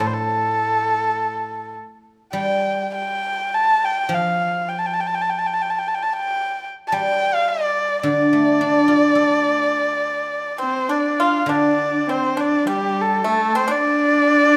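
A close, intimate erhu carries the tender, wistful melody of this Chinese traditional chamber fragment at 104 BPM in D yu mode, moving with a loose rubato feel; its light vibrato, portamento and airy bow sit up front over a ringing, silvery guzheng that accompanies until 13.2 s, while from 10.6 s a bright, dry, percussive pipa and a husky, distant horsehead fiddle with focused tone and slides join as second lines, the ensemble framed by a recital hall's moderate reverb.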